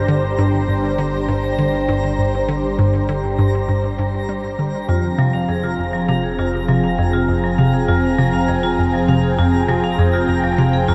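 Hypnotic and mysterious, this excerpt of sequencer-driven ambient space music moves at 100 BPM in F dorian, set in a vast, echoing space with a cassette-tape grain. A swirling, up-front sawtooth pad carries sustained chords through phaser, chorus, tremolo and shimmer reverb, while a hollow, bouncy square-wave pluck plays a riff through tape echo, a fat analog bass holds a low G, and a faint twinkling granular layer sparkles overhead. At 4.9 s the harmony shifts from Gm to Fm, and a metallic, ringing vibraphone struck with hard mallets enters with arpeggios, a filter sweep running across its tape echo and shimmer reverb until 10.9 s.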